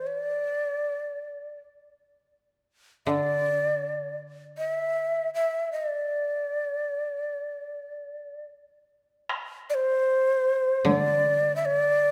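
Calm and austere, this short cut from a longer piece of Japanese chamber music moves in free time, led by a breathy, hollow shakuhachi whose vibrato, chiff and crisp attack sit up front from start to finish across a narrow high range. A mellow, woody koto plucked with fingerpicks accompanies it low and dry until 5.3 seconds, then returns at 10.8 seconds. In the later section a band-limited, vintage-sounding taiko ensemble struck with hard sticks enters at 9.3 seconds, all within a moderate concert hall reverb.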